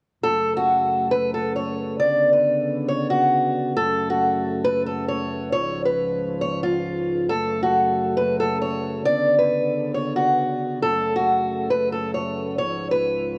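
From 0.2 s, an up-front, boxy fingerpicked acoustic archtop guitar carries a low-pass-filtered melody with audible finger squeak over sustained chords from a dark, tight brass section with light vibrato, moving through F#m, Bmadd9 and C# in F# harmonic minor. The result is a dark, brooding half-time hip hop fragment at 136 BPM, washed in a huge ambient reverb.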